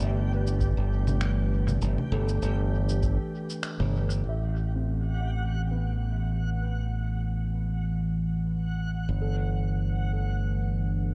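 Hazy and spacious, this ambient dub fragment sets a punchy, up-front fingered electric bass beneath a warbling, lo-fi pad with chorus, a soft, muted felt upright piano playing arpeggios through dub echo and a filter sweep from 4.2 seconds, and a reversed, granular swelling texture. Meanwhile, a deep background electronic kick falls away at 3.2 seconds, and muffled, overdriven, pitched-down cabasa, congas and finger snaps drop out after a band accent at 3.6 seconds.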